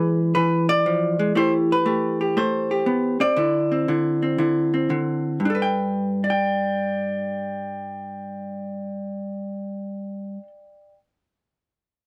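Swung eighth notes in 4/4 carry this relaxed, swinging solo jazz fragment, taken from a longer piece and played on a single vintage hollow-body electric guitar. The dark, clean, picked tone sits up front with compression, and close, detailed microphones capture it in a light reverb as it moves through E7b9, Am9 and Dsus2 before settling on Gadd9 at 5.4 seconds.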